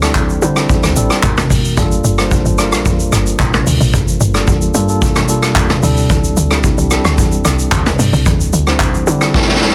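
Amapiano with a soulful, hypnotic mood, this short excerpt runs at a steady, straight-feeling pace in four. A mellow tine electric piano plays the chords throughout, its clean, soft tone heard as if through built-in speakers, moving from D7sus4 through Abm9 to a long stay on Gm9 before returning to D7sus4 at 5.8 seconds. Beneath it, a tight log drum bass gives punchy, percussive notes with a fast attack, an FM character and a noise layer, each note decaying. The acoustic drum kit sits up front and is the loudest part, with a boomy kick, a medium-tuned snare carrying soft clipping, plus handclaps, hi-hat, rim click, shaker and toms, all in a small-room sound with a rolled-off, warm top. A drum fill closes the passage at 9.3 seconds. The mix is dry and dense, with a heavily limited modern master.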